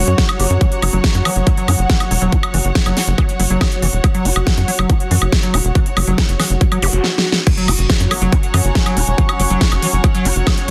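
An overtone-sweeping drone, a squelchy acid bass riff under a filter sweep, a tight sawtooth sequencer bass and a lush bowed string section open this hypnotic, psychedelic trance excerpt at 140 BPM, soon joined by an overdriven punchy kick and a big-room kit with a huge snare and crisp hats, while a very quiet, juicy blip pluck flickers in from 1.3 seconds and a faint swell, zap and impact sound around a drum fill and the drop at 7.5 seconds, all in a dense, heavily limited mix with light reverb.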